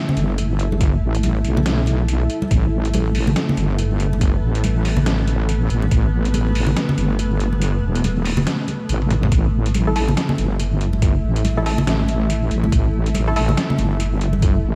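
A swung, half-time 141 BPM groove in 4/4 drives this meditative, cavernous deep dubstep excerpt, where a heavy, detuned wobble bass with chorus sits up front over a muffled, overdriven trip hop sampler-style kit of hi-hat, snare and toms, while bright hard-hand congas trail dub echo in the background and a thumpy electronic kick falls away at 6.0 s and returns at 9.3 s; a cloudy, evolving granular pad holds sustained chords, a muted filtered dub chord stab with chorus and echo appears at 9.9 s, and the whole mix is soaked in dreamy hall reverb and vinyl crackle.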